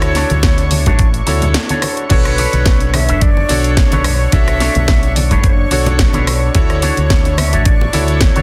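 A gritty, overdriven electronic kick thumps up front in this sleek, cosmic nu-disco piece at 108 BPM in B minor with a light sixteenth-note swing, beneath a breathy silver concert flute melody with vibrato and analog delay, a bright, clangy electric grand piano, a lush detuned unison pad with chorus and sidechain pumping in the background, a fingered electric bass through an envelope filter, a twangy envelope-filtered guitar riff entering at 0.2 seconds, a house kit with a cracking snare, hi-hat, rim click and crash cymbal, and ringing congas, moving from Dmaj7 to Bm9 after a short break at 1.6 seconds and returning to Dmaj7 at 6.5 seconds in a digital ambience with a dense, modern master.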